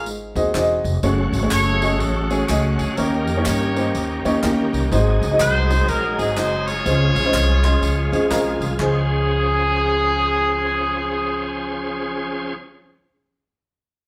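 A live-in-one-room band sound fills this short cut from a longer piece, set in a large studio with a wet reverb that lets the instruments bloom together. It is uptempo gospel at 124 BPM in 4/4 with a swung eighth-note feel, in Db major, and the mood is reverent and uplifting. A punchy, tight horn section carries the melody up front with a vintage pop bite, while a woody, smooth upright piano with short sustain supplies the accompaniment and steps out with a fill from 8.1 to 8.8 seconds. An acoustic upright bass, thumpy and played pizzicato on steel strings, anchors the low end, and tambourine, tube shaker and group handclaps sit close and dry until 9.1 seconds. From 1.0 seconds a tonewheel organ holds full, shouting chords through a slow rotary speaker, lightly overdriven with chorus vibrato and audible key click, as the harmony moves from Ab7 through Gbmadd9 and Eb7 to settle on Dbmaj7.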